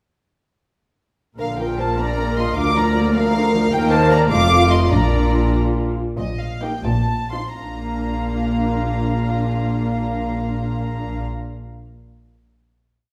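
A spirited, cheerful classical-period string orchestra movement in Bb major and a straight 6/8 at 82-104 BPM: the first violins sing a floating, sul tasto melody, the dark, woody second violins double the tune in sixths and add pizzicato and sustained chords, the lush violas weave flowing broken chords, the rich cellos and double basses anchor a bowed and plucked bass, and the whole brief piece slows from 4.3 to 7.6 seconds into a short coda and a final Bb chord ringing in the reverberant recital hall.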